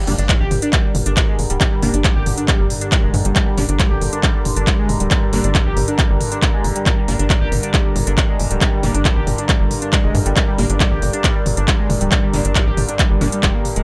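A punchy, layered electronic kick drives this short cut of hypnotic, relentless peak-time techno in a straight four, entering at 0.3 seconds. Around it, an up-front techno drum kit adds handclaps, smooth hi-hats and toms, while a tight sequencer bass with a dark, plucky sawtooth-and-square tone pumps against the kick. A gritty, guitar-like synth lead screams out its riff with vibrato, phaser, subtle chorus and dub echo, and thick, detuned rave stabs bite through with vintage 12-bit sampler grit, chorus, reverb and digital delay. Underneath, a resonant drone with moving overtones hangs in the background with phaser and chorus, while a warbly, nostalgic lo-fi pad washes over the top from the very start. Sidechain pumping breathes through the lead, stabs, bass, drone and pad, and the room itself carries little ambience.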